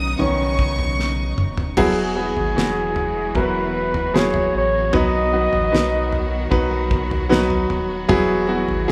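Tender and hopeful, this fragment of a pop ballad moves at an unhurried, straight 4/4 pace and sounds like a band playing together in one large studio room with moderate reverb. A clear, polished concert grand piano sits up front and carries the opening, supported by a distant, lush bowed string section holding sustained chords and a deep, round sine sub bass. High above, a floating violin section with a soft attack and a touch of delay adds a pure second line until 1.8 seconds, while a damped 70s drum kit, dry with a fat snare and tight kick, plays a fill into that point. A mellow flugelhorn then takes the melody, smooth on top with light vibrato, singing up front until 6.5 seconds. The harmony moves mostly through added-ninth chords, passing through a plain B major along the way, which gives the passage an open, yearning glow.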